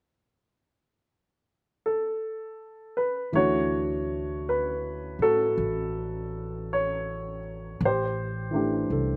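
Intimate and tender, this brief excerpt from a longer jazz ballad at a slow 54 BPM in D major with a swung feel opens on a natural, up-front baby grand piano with short sustain and a slapback echo entering at 1.9 seconds, joined at 3.3 seconds by a woody pizzicato upright bass on steel strings sitting low in the mix, as the harmony moves from Dmaj9 to Am7 in a dry, open-air sound.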